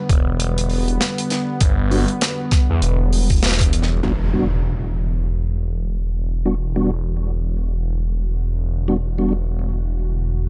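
Dry and dark-topped, this gritty, swaggering glitch hop excerpt at 99 BPM in E minor swings its 16ths over a thick, swirling phased saw bass and a smooth, detuned analog pad pumping under sidechain, while a thumpy, pitched-down electronic kick and a tight acoustic kit of hi-hat and medium-tuned snare drive the opening, a mellow, flute-like tonewheel organ with key click and fast rotary speaker adds filtered stabs with tape echo from 1.9 seconds, and an electronic impact lands at 4.0 seconds as the harmony moves from Em7 to Em9.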